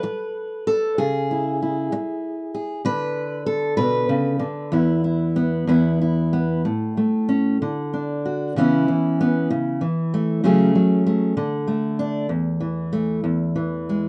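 A fingerpicked steel-string acoustic guitar opens alone, its full-bodied tone sitting up front in light reverb. This gentle, hopeful folk piece moves in a rubato 6/8 around 64 BPM in A major, tuned slightly below standard pitch at A4 = 438 Hz. The guitar ranges from E2 up to B4, drifting through C#m, Bm9 and E5 in the opening phrase. At 6.6 s a new passage settles on A and travels through D, C#m7 and F#madd9/C#. It lands on E at 13.2 s, and this short cut from a longer piece ends at 14.1 s.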